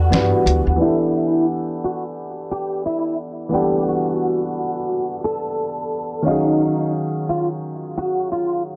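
This melancholic, hazy lo-fi hip hop excerpt opens on a brief break, with clean electric guitar, upright piano and pizzicato upright bass sounding together while a muffled, pitched-down sampler kit adds a short touch of hi-hat and a medium-tuned snare. The tempo sits at 88 BPM in 4/4 with a lazy 16th-note swing, in E minor, tuned slightly under standard pitch. The woody, steel-strung bass sits up front with transformer grit, then drops out at 0.8 s as a filter sweep takes over for the rest of the clip. The fingered, compressed guitar carries the melody in a narrow middle register, softened by ensemble chorus, a low-pass filter and tape echo. Beneath it the slightly detuned, vintage upright piano plays smooth, warm accompaniment over an Em11 chord that slips to D#m11 at 6.3 s. The whole mix has a dry, gritty hardware character with cassette-tape dullness and a light reverb.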